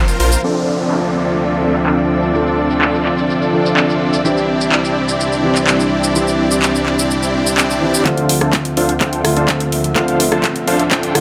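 Set in a lush digital hall, this uplifting, euphoric festival progressive house passage at 126 BPM moves from Dm7 to Cadd9 and back, with a huge, detuned supersaw riff pumping up front through filter sweeps and dub echo, a mellow grand piano with audible action noise, soft-attacked dark chamber strings holding sustained chords, a bright, overdriven house kit of handclaps, hats, rim clicks and shaker, faint downlifter, swell and riser effects, and a punchy overdriven electronic kick that arrives at 8.1 seconds for the build-up and drum fill.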